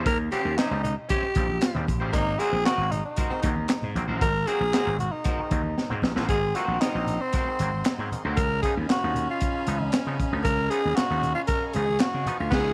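Gritty, energetic funk at 115 BPM in 4/4, cut from a longer piece, where a raspy, growling tenor saxophone with tape echo carries the melody up front over an overdriven, growly slap bass and a crunchy breakbeat kit with dark cymbals, high-tuned snare, punchy kick and handclaps, while a twangy auto-wah clav stabs and a slightly broken-up guitar with ensemble chorus comps in the background until 8.4 seconds, soft-handed congas tap very quietly, a clear baritone saxophone adds a second line from 2.1 seconds, a lush bowed string section enters very quietly at 6.3 seconds after a drum fill, and the chords move from Eb13 to Ab9 to Db9 in a small, lightly reverberant room before a band accent at 12.5 seconds.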